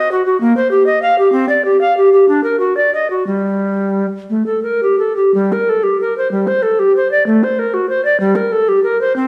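Flowing and dance-like, this baroque-style classical fantasia fragment features a mellow bass recorder alone, its airy wooden tone carrying vibrato, tongued notes and a chiff up front in a rubato 6/8 as it moves through two sections over its 9.3 seconds, bathed in a recital hall's resonance.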